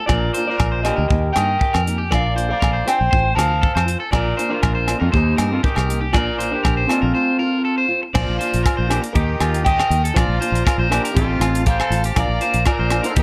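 A dark, slightly broken-up electric guitar opens this danceable highlife excerpt with arpeggios in Bb major at 119 BPM. It is joined at once by a twangy, picked electric guitar carrying the melody, a clear trumpet with vibrato on a second line, and a small, fingerpicked nylon-string guitar in the background, those three touched with plate reverb. A round, foam-muted fingered bass sits up front beside a tight funk kit with a punchy kick, crash, hi-hat and rim clicks, while ringing agogo bells chime further back over a repeating cycle of Bb, Eb and F/A, and at 8.1 s a buzzy vintage combo organ enters very quietly with heavy-vibrato sustained chords.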